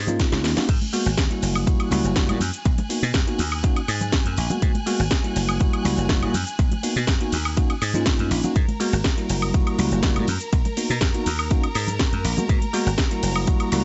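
Funky and sensual filtered disco house that opens on a short drum fill before the drop at 0.7 seconds brings in a lush, vibrato-rich violin section with 12-bit sampler grit, joining a punchy, foam-muted thumbed slap bass, a bell-like phased tine electric piano, a punchy up-front electronic kick, a house kit with cracking snare and metallic hats, and very quiet soft-handed congas and tambourine, while the bass, piano and violins pump under sidechain and a low-pass filter over a gritty, saturated, dusky-topped hardware sound.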